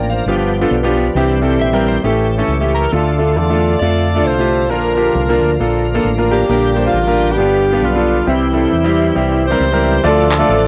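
An edgy, tightly punchy saxophone section carries the melody from 2.7 seconds in this soulful, uplifting swung gospel excerpt, riding over a brilliant concert grand piano, a shouting tonewheel organ with key click and slow rotary speaker, and a round, dark fingered electric bass, while a clean picked guitar with warbly pitch drift appears briefly in the background and a crisp group handclap lands at 10.3 seconds, all in a lightly reverberant home cassette recording.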